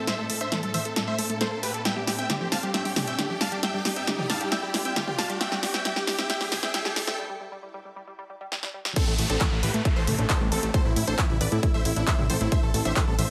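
Emotional and driving, this uplifting trance passage is cut from a longer piece and moves in a straight 4/4, building for its first nine seconds before dropping at 9.0 s. A huge, euphoric supersaw lead carries the melody with sidechain pumping, a low-pass filter and dub echo, while a round, very quiet analog pluck traces a second line. In the background, a shimmering, ethereal pad holds sustained chords through chorus, phaser and its own reverb, and a tight sequenced synth spins mellow arpeggios under a filter sweep, with risers and downlifters adding electronic effects. A punchy, dry analog drum machine with crash, handclaps, hi-hat, snare and toms plays fills through the build-up before a break at 7.2 s. At the drop, an overdriven, layered electronic kick arrives up front alongside a fat, detuned sawtooth bass, together pushing the groove as the harmony returns from Gsus2 to Am under a moderate room reverb.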